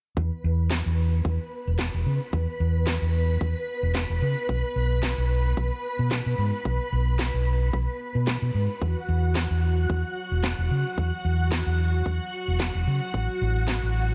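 A dark, round, hollow-body electric bass sits up front, its amped tone carrying this sunny, feel-good nu-disco excerpt from 0.2 seconds onward. Behind it, a vintage string machine holds lush, sustained chords with a soft attack, its sawtooth ensemble thickened by a sub octave, ensemble chorus and sidechain pumping, while a filter sweep moves across it for the whole passage. An electronic kick sits in the background with a punchy, layered, high-passed sound, and a cracking electronic snare joins at 0.7 seconds. The groove runs in 4/4 with a light swing on the sixteenths, and the tuning sits slightly below standard pitch. The harmony moves from E5 through a chordless stretch to Esus2 and lands on F#m/A, all framed by light reverb and a mellow top end that keeps the sound soft rather than bright.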